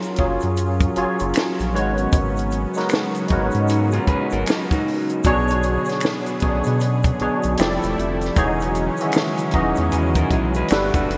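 A bright, 1980s-style digital sheen and a moderate lush hall reverb frame this short neo-soul R&B excerpt, which moves at an unhurried 77 BPM in 4/4 with a swung sixteenth-note feel and a soulful, sensual mood. Up front, a barky tine electric piano, lightly overdriven through a combo amp and thickened with ensemble chorus, carries the accompaniment over chords that drift from F#maj7 and G#m11 through Bm6 to Fmaj13 and Emaj13. A compact cocktail drum kit sits dry and up front, with a punchy kick, a high-tuned snare and hi-hat, while an egg shaker, finger snaps and group handclaps add close acoustic texture. A round, deep analog bass with a fast attack and dark, evolving ring-modulated colour enters at 0.2 seconds, and a smooth, detuned sawtooth pad with chorus and tremolo holds sustained chords in the background. A slightly broken-up, fingered electric guitar with delay adds a second line in two brief spots, from 3.7 seconds and again from 9.9 seconds.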